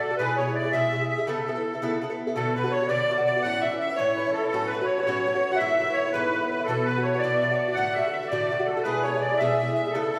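Celtic folk jig in 6/8, cheerful and rollicking, moving at 111 BPM counted in dotted quarters and tuned to A4 = 442 Hz, cut from a longer piece. A reedy musette accordion with its shimmering musette tuning carries the melody up front, joined from the start by a single bowed fiddle, rich and earthy with a boxy tone, playing a second line in the background. A picked Irish bouzouki with double strings gives a metallic, acoustic accompaniment, also up front, across the low and middle register. At 2.3 seconds a hammered cimbalom enters in the background with a ringing second line of its own. The harmony moves from E and Aadd9 through Bm, A, F#m, E, Esus2 and D before returning to E. The whole ensemble sits in a wet recital hall reverb of about 1.6 seconds, giving the sound of a church or concert hall.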